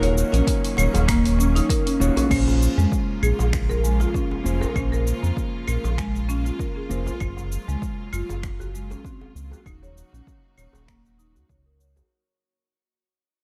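Organic downtempo in Bb minor at 98 BPM, this earthy, hypnotic passage is cut from a longer piece and moves in 4/4 with a light swing on the sixteenths. A round, deep analog bass sits up front with sidechain pumping, while a woody marimba struck with medium hard mallets carries arpeggios through delay and shimmer reverb. A punchy, overdriven electronic kick enters at 0.5 s beside a layered deep house kit of cabasa, claves, crash, finger snaps and hi-hat, and a tight, cracking djembe sits in the background. A bright, distant symphonic string section holds sustained chords, and a clean, fingered electric guitar adds dark accompaniment until 7.1 s, bathed in spring reverb and delay. A plucked, fretless oud with double strings sounds briefly in the background at the start, and from 2.3 s the whole passage fades out as the harmony moves from Ebm7 through Bbm7 and Gbmaj9 back to Ebm7.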